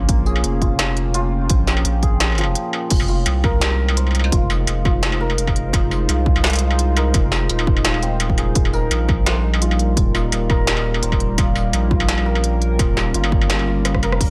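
A light, digital ambience gives this heavy, spacious half-time drum and bass excerpt in F minor at 170 BPM an open sense of room, as a deep, moody ambient pad with chorus and sidechain pumping holds dark sustained chords under a bright, shimmering santur whose hammered arpeggios ring through a delay. Up front, a thick, saturated sub bass with a fast attack anchors the low end, while an electronic kick and an industrial kit of clanging snare, crisp hats, rim clicks, struck metal, tambourine and crash drive the lightly swung groove. After a short break at 2.6 seconds, the harmony moves from Bbm to Fm7 and on to Eb at 8.6 seconds, and a drum fill closes the passage at 13.9 seconds.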